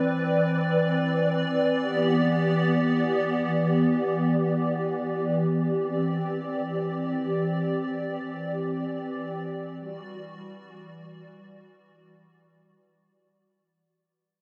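The music floats in free time, a short hip hop fragment carried by a single pad playing alone from start to finish. That pad sounds hollow and flute-like, with a detuned, dark edge softened by an ensemble chorus, and it sits up front. It spans E3 to D5 with slow attacks and long, sustained releases. The harmony drifts from Cmaj9 through G6 and D9sus4 before settling on Em9 at 9.8 seconds. A huge ambient reverb lets each chord linger and blur into the next, lending a dreamy, blissful haze. A fade-out begins at 2.6 seconds and runs to the close at 13.8 seconds.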